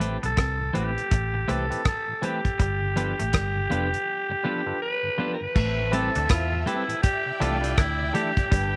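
A relaxed 4/4 groove with a lilting swing on the sixteenths sets this lovers rock reggae excerpt in a bittersweet, longing mood. A damped 70s drum kit sits up front with dark cymbals, a tight kick, hi-hat, rim click and crash, while a foam-muted fingered electric bass lays down a round, punchy low end. Bright, compressed twelve-string electric guitar stabs, a barky tine electric piano through a combo amp and a very quiet, flute-like tonewheel organ with key click fill out the accompaniment, and a twangy electric guitar riff with lush chorus sits in the background. A raspy, gritty alto saxophone carries the melody up front from 0.3 seconds, colored by tape echo and light vibrato. At 5.6 seconds a symphonic violin section enters with a smooth, bowed second line, and the whole band plays in a small room with light reverb.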